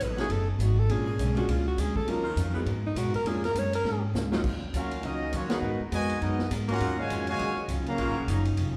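A fast, dramatic big band swing passage in Eb minor at 203 BPM opens with a warm alto saxophone solo with vibrato, set over a woody pizzicato upright bass up front, a dark, clean hollow-body guitar, sustained chords from the saxophone section and a vintage drum kit with dark cymbals and a punchy kick, while a baby grand piano with short sustain sits in the background. After a drum fill closes the solo, the clear trumpet section takes the melody at 4.8 s with light vibrato and a bright trombone section carries a second line, punctuated by a full band accent at 5.5 s. Minor ninth and altered dominant chords colour the harmony, and a roomy studio reverb places the band further back in the space.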